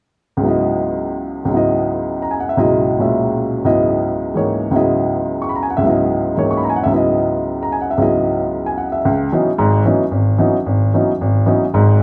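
A large studio's wet reverb, lingering about 1.3 seconds, surrounds a woody, up-front upright piano that plays alone from 0.4 to 12.0 seconds in this fragment of a longer jazz piece. Swinging in 4/4 at a brisk 223 BPM in C# dorian, the piano opens on a C#m11 chord and ranges from deep G#1 up to C#6. The mood is searching and hypnotic, with a new section arriving at 9.0 seconds.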